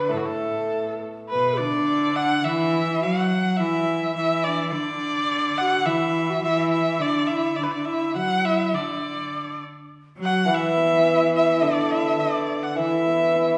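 Pastoral and graceful, this excerpt of Chinese traditional chamber music moves with a free, rubato feel in a reverberant recital hall. A rich, up-front erhu carries the melody with vibrato and smooth portamento, while a close, earthy cello with a biting bow and a breathy bamboo xiao with tongued notes and lifted highs weave second lines beneath it. A bright, shimmering hammered dulcimer rings out in accompaniment from 0.1 to 1.9 seconds, then returns at 10.5 seconds to close the passage.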